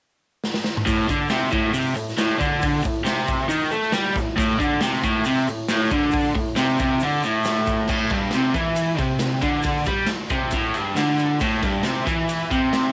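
An overdriven electric guitar, double-tracked and picked, leads this rowdy, swaggering garage rock clip, playing a riff that sits up front from 0.9 seconds and moves into a new section at 7.9 seconds. A raw acoustic drum kit kicks things off with a short fill at 0.4 seconds, then drives a straight 4/4 groove with crash, ride, hi-hat, a medium-tuned snare, toms and a punchy kick. The drums sound gritty and saturated, mid-forward with a rolled-off top, set in a stone room with a bright ring. Far back in the mix, a grainy tube shaker adds a small-room rattle of percussion. Light reverb and the cassette tape sheen on the guitar and drums give this home recording its rough, homemade character, cut from a longer piece.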